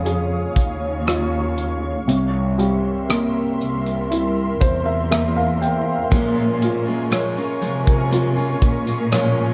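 A soft, felt-muted upright piano with audible action noise accompanies this longing, heartbroken pop ballad fragment and plays a fill from 4.1 to 6.1 seconds, over a dark, bowed cello section with expressive vibrato on the bass, an ethereal pad with chorus, tremolo and reverb, and a punchy, up-front studio drum kit of kick, hi-hat and rim click, before a full-bodied picked steel-string acoustic guitar with tape echo enters at 6.1 seconds, all set in a dark, warm production with small room ambience.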